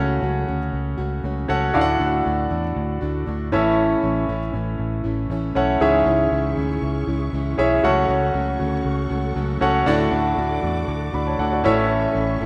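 A clear concert grand piano opens this bittersweet pop passage at 118 BPM in F# minor, its intimate, up-front sound carrying audible action noise, deep bass and a long sustain over a straight 4/4 feel. Alongside it from the start, a fingerpicked plugged-in steel-string acoustic guitar plays a riff from the background, its jumbo, full-bodied tone marked by finger squeak, while a vintage muted fingered electric bass sits up front with a dark, round, foam-muted and amped character. The earnest progression moves through F#m/C#, D, A and C#m before circling back to F#m/C#, D and A. At 5.8 s a rich studio string section enters with sustained chords, its distant, bowed ensemble sound shaped by vibrato, portamento and a soft attack. A lush hall reverb bathes the rough home-demo mix, and the passage, cut from a longer piece, runs to 12.5 s.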